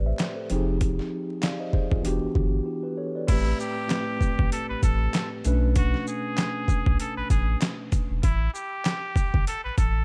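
A clean, mellow tine electric piano sits up front over a deep, round sine sub bass as this gritty, reflective boom-bap hip-hop excerpt opens, joined almost at once by a compressed, pitched-down, overdriven sampler kit with a thumpy kick, medium-tuned snare, hi-hat, shaker, handclaps and crash, all swung on the 16ths. After a brief break, a trumpet with a straight mute takes a bright, nasal jazz solo at 3.3 seconds, with vibrato and tape echo, while the piano stops at 8.3 seconds. Vinyl crackle and a dark digital ambience frame the recording.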